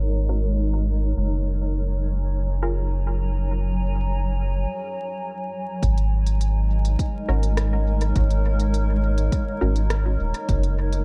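A blurred, granular cloud pad holds sustained chords over a round, up-front sub bass, while dark, detuned sawtooth chord stabs drift through phaser, cassette tape and dub echo as a filter sweep moves between Ab9sus4 and Gbmaj7. This spacious, hazy slice of ambient dub at 103 BPM, tuned to A4 = 437 Hz, pauses for a brief break at 4.7 seconds. At 5.8 seconds a deep, overdriven electronic kick arrives with a kit of smooth hi-hats and rim clicks, the kit carrying its own dub echo, all within an echo-heavy, low-passed mix dusted with vinyl crackle.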